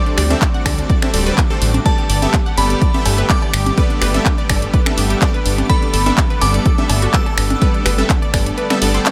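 Expansive and uplifting, this short progressive house excerpt at 125 BPM in G major moves from D7sus4 to Gadd9, with a punchy, overdriven electronic kick up front and a deep, rumbling detuned saw bass with sidechain pumping sitting alongside a layered big-room kit of finger snaps, handclaps and hi-hat, background rim click, congas and cowbell recorded in a large room, lush supersaw pad chords with vintage 12-bit grit, pumping supersaw stabs with delay, warbling unison pluck arpeggios, a glassy FM bell melody with chorus and delay, and a very quiet twinkling granular shimmer, all in a dry mix, before the kick drops out at 8.6 seconds.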